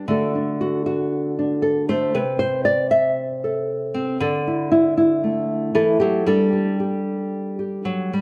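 In a straight 4/4 feel, this short, haunting and reflective folk fragment features a solo nylon-string guitar, thumb-plucked in a classical manner and placed up front, moving through D, Am/C, Dsus2 and Gsus2 over 8.2 seconds, its warm acoustic tone wrapped in a moderate large-studio reverb within a dark production marked by lossy compression artefacts.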